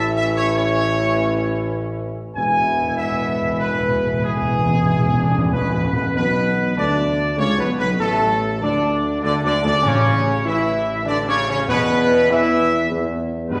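A mellow, up-front trumpet section carries the melody of this solemn, majestic classical ceremonial fanfare in 3/4 at 98 BPM, cut from a longer piece, over sustained chords from a dark French horn section in the background and a warm trombone section, with a soft-attacked, smooth-topped tuba holding the bass, each brass part shaded with light vibrato, while close, dry calf-head timpani struck with medium mallets add a fill from 2.4 seconds and return at 9.9 seconds, the brass sitting in the wet reverb of a recital hall.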